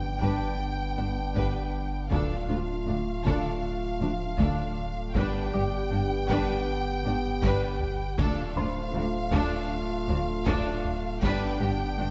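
Vast and tense, this 79 BPM cinematic excerpt of hybrid orchestral and electronic film score sets a lush, vibrato-rich violin section melody over a softer second violin line, dark woody violas, smooth background cellos, very quiet double basses and distant, mellow French horn chords. Alongside them run a tight, detuned sawtooth synth arpeggio, a deep, punchy sine sub bass and very quiet, close and dry taiko drums, while a barely audible electronic impact opens the first 2.1 seconds and an intimate felt-muted upright piano with tape echo adds texture, all within a wet scoring-stage reverb as the chords move between G and Dm.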